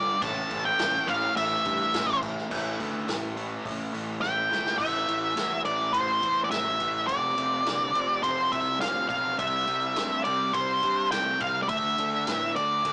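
A rough rehearsal-room recording with light reverb, warm saturation and a small-speaker sound frames this gritty, driving classic rock excerpt, which is cut from a longer piece. Up front, an octave-fuzz lead guitar carries the picked melody in a distorted, dark tone high in its range. Beneath it, a double-tracked overdriven electric guitar picks a dark, low riff, while a bright, punchy fuzz bass adds direct, amped grit at the bottom. A vintage acoustic drum kit with a natural studio-room sound joins at 0.2 s with kick, medium-tuned snare, hi-hat, ride and crash, its cymbals dark and its sound rolled off at the top, and a drum fill at 4.2 s leads into the longest section. The harmony moves through power chords on A, F and D along with a C chord, with the F arriving at 7.1 s.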